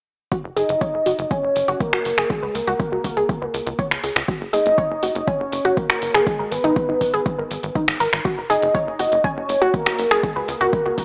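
Progressive house with an uplifting, expansive mood, cut from a longer piece and set in a steady four-four pulse. A lush, detuned unison pluck plays bright arpeggios from 0.3 seconds, pumping with sidechain under dub echo while a filter sweep runs across it for the whole passage. The overdriven electronic kick lands deep and up front, joined by a layered house kit of finger snaps and hi-hat that carries the grit of a large room. Entering at 0.4 seconds, a tight sequencer bass adds punchy, driving sawtooth and square-wave notes with a moving notch and its own sidechain pumping. At 0.6 seconds a velvety synth lead takes the melody, smooth yet dark, with a sub octave, chorus, tremolo, vibrato and dub echo. The mix sits in light reverb with a small-speaker character over chords that move from F# through C#5, G#madd9 and back, closing on C#7sus4.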